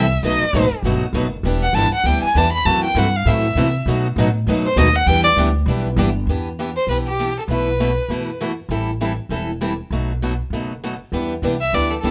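Swung eighths at 198 BPM in 4/4 drive this bittersweet, virtuosic string-swing excerpt in E minor, where an expressive bowed violin with vibrato and portamento carries the melody up front until 8.4 seconds before returning briefly at 11.6 seconds. Two picked steel-string acoustic guitars, one a bright, boxy parlour instrument and the other a fresh-stringed concert guitar that drops out from 6.1 to 11.1 seconds, supply the accompaniment. A woody, thumpy pizzicato upright bass on gut strings anchors the bottom in a moderate studio room as the harmony moves through B7, Em7, F#m7b5 and Am7.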